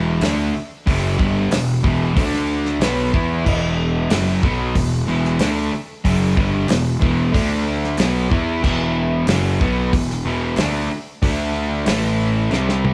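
Classic rock in E dorian at 93 BPM, this brooding, driving excerpt runs a straight 4/4 with the feel of a band playing live in one room, set in a moderate large studio reverb. Two guitars carry the riff from the first second: an up-front crunchy overdriven guitar with a warm, picked tone, and a bright distorted electric guitar sitting a little lower in the mix. Beneath them, a fuzz-soaked picked bass growls through its overdrive, while a damped 70s drum kit enters at 0.2 seconds, dry and mid-forward with dark cymbals, a medium-tuned snare and a tight kick placed up front. A very quiet group handclap adds a crisp, close accent across the passage. The harmony moves mostly between Em and D5, shifting to E5 and then to A5 as a drum fill closes the clip at 12.5 seconds.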